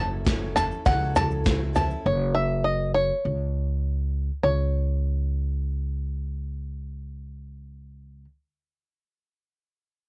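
A dry home cassette recording captures this yearning, stirring indie folk piece at 101 BPM in a straight 4/4, its arrangement built over an F#m7 chord until the harmony drops out at 4.4 seconds. Up front, a twangy, percussive banjo played with fingerpicks carries the melody with a cassette-tape grain, while a woody, thumpy upright bass on gut strings plucks dark low notes beneath it. Early on, a shimmering, octave-doubled twelve-string acoustic guitar adds boxy picked accompaniment with audible finger squeak and the same tape coloring, dropping out at 2.1 seconds. Briefly from 0.3 seconds, a roomy brushed drum kit with a tight kick, medium-tuned snare and toms enters together with a grainy, bright tube shaker sitting in the background.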